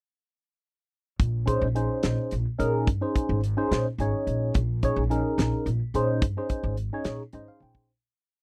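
This is a close, dead-sounding 1970s-style studio recording with very little room around the players, giving the short piece a driving, intense electric jazz fusion character in a rolling 6/8 groove. From 1.2 seconds, a damped drum kit with a fat snare, tight kick and rolled-off top sets the pulse across hi-hat, kick, snare and toms, sitting up front beside the bass. The pizzicato upright bass has a woody, thumpy gut-string tone as it plays a syncopated riff over a Bbm11 harmony. A clean tine electric piano, colored by a phaser, adds syncopated chord stabs in rootless voicings up front in the mix. The whole groove fades out from 6.2 seconds, with an electric piano fill at 7.1 seconds and a short drum fill just before the close.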